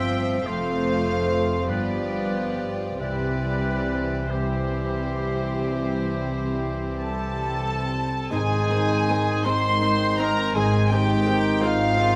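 Classical slow romantic orchestral movement, lyrical in mood, flowing with rubato at 40-57 BPM in 12/8 and moving from C major to Ab major at 8.3 s, heard as a fragment of a longer piece. A rich, sul tasto violin section carries the melody while clarinet, a crisp silver concert flute, a distant oboe and a background violin section weave second lines; bassoon, a very quiet mellow French horn section, ringing fingerpicked harp and dark violas, cellos and double basses supply accompaniment and bass. A bright trumpet section adds tight stabs from 7.0 s, a roomy trombone section joins with sustained chords at 8.3 s, and a moderate scoring-stage reverb gives the ensemble its spacious glow.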